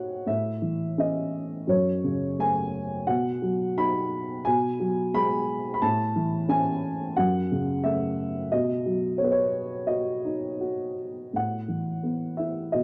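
Sunny and relaxed, this short excerpt of lyrical classical solo piano moves at about 87 BPM in 4/4 with a loose rubato feel, set in A lydian. A dark, woody upright piano sits up front, ranging from F#2 to B5, its mellow, slightly boxy tone wrapped in a moderate plate reverb with a warm overall sound. The harmony cycles through A, F#m, B and G#m7/B before a brief closing passage from 11.3 seconds rests on Asus2.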